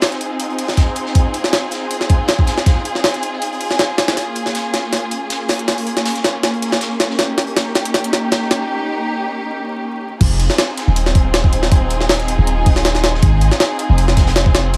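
Lush, bowed strings with vibrato hold sustained chords up front in this raw, frenetic jungle and drum and bass cut, riding over a compressed, pitched-up sampler-style kit with a thumpy kick and high-tuned snare, while a saturated, mid-forward breakbeat kit sits very quietly beneath. The build-up carries a drum fill from 4.2 s into a brief break, then at 10.2 s the drop brings in a deep, boomy 808-style bass with a sine tone and a noise layer. Spring reverb, heavy echo and vinyl crackle give the mix a gritty, aged haze.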